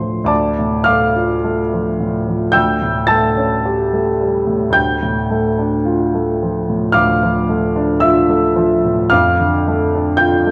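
Classical romantic nocturne for solo piano in D minor, melancholic and mournful, unfolding at a slow 55 BPM in 4/4 with free, rubato phrasing. A baby grand piano plays alone up front, present and long-sustaining, spanning D2 to A6 as the harmony moves from Dm to A7/D at 2.5 seconds, back to Dm, then settles on Dm/F at 9.1 seconds. A wet recital hall reverb and a dark, warm production surround this short cut from a longer piece.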